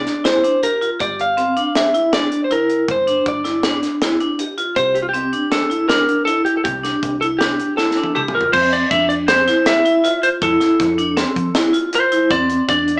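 In a straight 5/4 at 159 BPM, this brooding, intricate progressive instrumental, cut from a longer piece, sets a slightly broken-up, compressed lead guitar melody up front beside bright, ringing hard-mallet vibraphone arpeggios with fast motor vibrato, over a round, dark hollow-body electric bass and a tight funk drum kit with a high-tuned snare that enters at 0.1 s and plays a fill from 7.8 to 8.5 s as the harmony moves from C and G5 to Fmaj7 and Cadd9/E, the band heard playing live in one room with moderate reverb and a small-speaker character.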